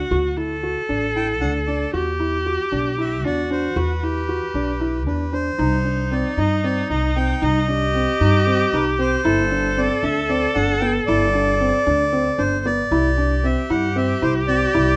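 A clear, biting viola opens this excerpt of urgent, pensive chamber music in a brisk 7/8 at 230 BPM (eighths), joined at once by mellow arpeggios on a felt-muted upright piano and a woody, growly pizzicato upright bass, before a reedy, airy accordion takes the melody at 1.2 s and the harmony shifts from D and Em7 toward Cm at 5.6 s, all captured up close with light reverb.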